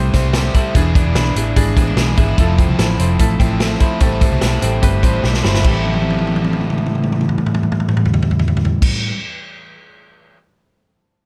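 A bright, twangy twelve-string electric guitar rings out spring-reverbed arpeggios in this bittersweet, wistful jangly indie pop excerpt at 147 BPM in A minor, joined by a crunchy overdriven guitar, a woody, slightly detuned upright piano in the background, a round, amped foam-muted fingered bass and an up-front vintage drum kit with a punchy kick and dark cymbals that rolls into fills from 5.2 seconds, as the chords move through Am7, E7 and Fmaj7 and the piano lingers last until 11.3 seconds.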